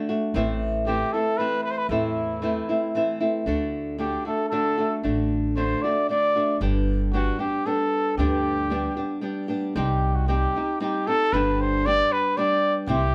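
A mellow trumpet with light vibrato sings a classical-style solo melody up front from 0.9 s in this romantic, festive mariachi piece in 3/4 at 115 BPM in G major, over fingerpicked acoustic flamenco guitar, also up front, and a woody pizzicato upright bass that enters at 0.3 s, played by a band together in a small room with moderate reverb, before a new section at 9.8 s turns briefly to C minor and then settles back on G.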